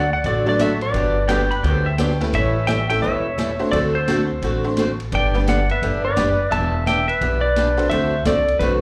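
An up-front clean lap steel guitar carries the melody across this cheerful, swinging western swing excerpt, its compressed slide lines shaped by volume swells through plate reverb and slapback echo. A breathy, whispered clarinet with light vibrato and scooped notes supplies a mellow second line beneath it. For a brief moment, from 1.3 to 2.3 seconds, a fingerpicked pedal steel guitar adds its own high second line. A woody, boxy picked acoustic guitar and a jangly, metallic tack piano fill out the accompaniment, while a thumpy gut-string upright bass sits up front and a vintage drum kit with dark cymbals stays in the background. The whole band comes across as a live club gig heard through the venue's PA, framed by light reverb.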